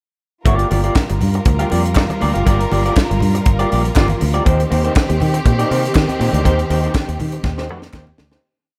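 Disco in a glamorous, danceable mood, this short piece sits in a pre-chorus built on Gm7 moving to Eb6. A tight funk drum kit with a high-tuned snare drives a four-on-the-floor beat with open hats on the off-beats, up front beside a dark, round, foam-muted fingered bass playing a syncopated line with chromatic approach notes. An electric guitar through a small old amp adds a choppy sixteenth-note disco part, slightly broken-up, compressed and lo-fi, while a lush bowed string section holds smooth sustained chords with vibrato. Very quiet congas, with a slap on two and open tones on four, and hollow group handclaps on the backbeat from 1.0 seconds fill in the percussion. The dry mix fades out from 6.5 seconds as a drum fill closes the piece.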